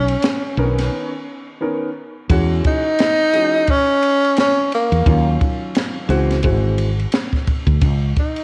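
Smooth and warm, this short jazz-hop excerpt moves at an easy 87 BPM in 4/4 with a swung sixteenth-note feel. A breathy, mellow tenor saxophone carries the melody up front from the start, singing with vibrato and scooped notes in a soloist's jazz style. Beneath it, a woody fretless electric bass sits close and punchy, its round, hollow-bodied tone anchoring chords that move from Bmaj9 through E69, D#m9 and G#7b13 before landing on C#sus2. A compact cocktail drum kit with a high-tuned snare and tight kick plays hi-hat, ride, snare and kick in a small, intimate room, with a break between 0.9 and 2.3 seconds. A dark, vintage-sounding grand piano adds soft accompaniment from 0.6 to 6.9 seconds, and a moderate echo-chamber reverb gives the whole a gentle sense of space.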